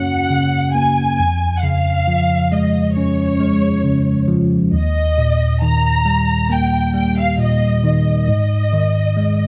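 A bright, bell-like tine electric piano with a phaser sits up front in this emotional, heartfelt pop ballad excerpt at 68 BPM in Db major, tuned to A4 = 439 Hz, carrying the accompaniment through Gb, Db/F, Eb and Ab5 chords while a lush, warm studio violin section sings the bowed melody with expressive vibrato, set in a moderate scoring-stage reverb blended with a small room.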